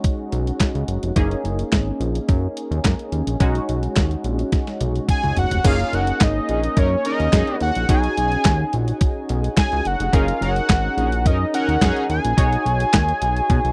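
This excerpt has a dry, close sound in a 1970s studio style, cut from a longer early-eighties boogie funk piece with a feel-good, danceable groove in a straight 4/4. A detuned 8-bit digital drum machine sits up front from the start, its thumpy kick, medium-tuned snare, handclaps, hi-hat, crash and toms carrying a sampler-style punch and the air of a large room, with a drum fill from 4.5 to 5.6 seconds. A punchy, bright polysynth comp with chorus plays funky chords throughout, moving between B69 and F#69, while a fat, thick analog bass built from sawtooth, square and ring-modulated tones enters at 0.3 seconds with filter sweeps. At 5.1 seconds an evolving analog lead with chorus and vibrato takes the melody in a high register, sitting up front. Soon after, brassy, warbling analog synth brass with a mellow, vintage edge adds a second line until 12.0 seconds.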